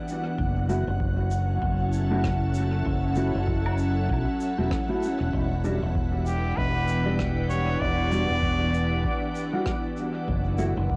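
Ambient dub with a hazy, deep mood, cut from a longer piece and recorded at home on cassette, where a bright, detuned organ-like pad with ensemble chorus holds sustained chords over a bubbling, resonant stepped-filter texture, a warm up-front fingered bass, a deep analog kick, a small-room shaker, rim click and woodblock with dub echo, and dark, chorused guitar stabs in the background, while a nasal straight-muted trumpet plays a smooth solo melody with dub echo from 6.3 to 9.7 seconds.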